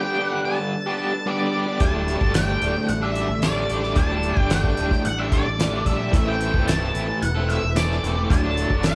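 A straight 4/4 groove drives this trippy, kaleidoscopic psychedelic rock excerpt, cut from a longer piece and played by a band live in one room with a moderate large-studio reverb. From the start, a bright, double-tracked garage guitar sits up front with an overdriven, tremolo-laced riff. A dark octave-fuzz lead guitar carries the melody through wah and distortion, while a very quiet tonewheel organ holds sustained chords with key click, percussive attack and a slow rotary-speaker churn. At 1.8 seconds a round, punchy fingered bass arrives, fuzzed and overdriven, alongside a dry, damped 70s drum kit with a fat snare, tight kick and hi-hat. A jingly, compressed tambourine slips in very low at 2.3 seconds as the harmony moves from Gadd9 through Dsus4 and Amadd9 to D.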